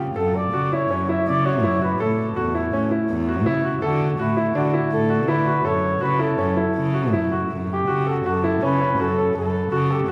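Hypnotic and restless, this fragment of contemporary chamber music moves at 163 BPM in 5/4 in F# phrygian, with brilliant, up-front grand piano arpeggios and a close, airy sul tasto cello bass beneath a distant, roomy flugelhorn melody with light vibrato, all bathed in the long reverb of a church as the harmony moves through F#m, A, D and F#m7 before a new section begins at 7.5 seconds.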